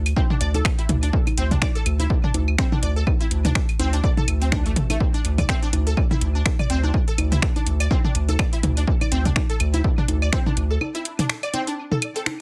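A swung 124 BPM groove in 4/4 drives this sparse, clinical minimal techno excerpt, built on a punchy, up-front electronic kick and a booming analog drum machine with finger snaps and metallic hi-hats, while tape-echoed electronic claves, congas and toms sit beside a deep, round bass with sidechain pumping and a squelchy, nasal blip pluck riff dressed in chorus, tape echo and sidechain pumping, until the kick stops at 10.4 s and the bass at 10.8 s for a short, dry break.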